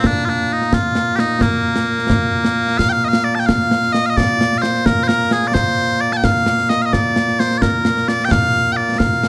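Loud, bright bagpipes carry a piercing, continuous solo melody up front in this proud, ceremonial excerpt of Scottish pipe music in 6/8 and Bb major at 87 BPM, joined throughout by close, acoustic concert snare and bass drums with dark cymbals, all set in light reverb with a detailed, close sound as the opening section gives way to a new one at 2.8 seconds.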